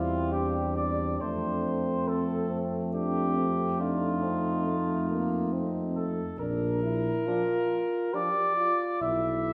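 A wet recital hall reverb surrounds this brief classical brass quintet excerpt, heard from further back in the room, with a stately, warm mood in an unhurried triple metre. The trumpet carries the melody up front, its tone mellow yet punchy, with a distant, roomy quality. Beneath it, the flugelhorn adds a smooth-topped second line in the background, while the French horn sounds clear and close-miked and the trombone comes through clear and present in their shared accompaniment. The tuba anchors the bass up front with a soft attack and light vibrato. The harmony moves from C/E through F and F7 to Bb; the flugelhorn and trombone stop at 8.3 seconds, leaving trumpet, horn and tuba to finish at 9.5 seconds as the chords fall away.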